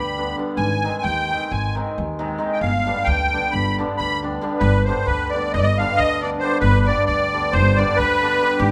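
A reedy musette accordion leads this fiery, bittersweet Balkan wedding-band tune in G phrygian dominant, carrying a shimmering melody up front and taking a featured solo through the first 4.6 seconds before the music moves into a new section. Beneath it, a mellow, ringing hammered dulcimer supplies the accompaniment while a woody pizzicato upright bass holds the low end. The 9/8 metre runs straight at 269 BPM in eighths over a harmony that shifts from G to Ab and back to G, all set in a moderate recital-hall reverb in this short cut from a longer piece.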